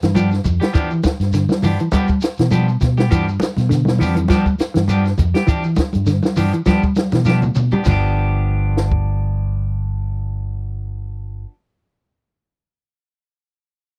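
Dry and close, this recording has the intimate sound of a 1970s studio, cut from a longer funky, driving afrobeat piece with a light swing on the sixteenths over a G7 chord. A compact cocktail drum kit sits up front with dark cymbals, a high-tuned snare and a punchy kick, working across hi-hat, toms and crash. A round, amped fingered electric bass shares the foreground, while a grainy shekere and thick-skinned, soft-handed congas sit further back. A semi-hollow electric guitar plays clean, fingered arpeggios with a hollow-body glow and analog chorus, and a bright, picked clean electric guitar adds stabs. A drum fill at 7.0 seconds leads into a new section, where the drums drop out at 9.0 seconds; the bass carries on until 11.4 seconds, and the stab guitar until the close at 11.5 seconds.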